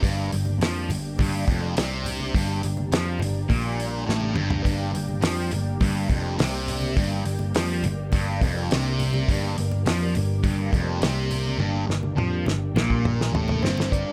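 A small room holds this mysterious, trippy psychedelic rock excerpt, where a damped 70s drum kit with a fat snare and tight kick sits up front beside a bright, double-tracked fuzz guitar riff colored by phaser, a round, foam-muted picked bass anchors the low end, very quiet low-tuned congas ring underneath, a warbling ensemble organ-string pad holds sustained chords, drum fills arrive at 4.1 and 11.6 seconds, and a mellow combo organ melody with light vibrato and slapback echo enters at 13.6 seconds.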